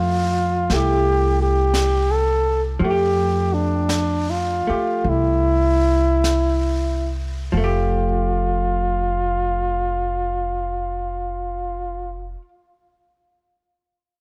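Jazz ballad in F major, tender and late-night, swinging gently at 46-60 BPM and easing its tempo through the first 7.5 seconds of this excerpt cut from a longer piece. Up front, a mellow flugelhorn sings the solo melody with vibrato and scooped notes, over a dark, clean, picked hollow-body electric guitar and a woody pizzicato upright bass. An airy brush kit of brushed snare and hi-hat enters at 0.7 s and drops out at 8.2 s, as the harmony moves from Fmaj9 to Fadd9 in light reverb.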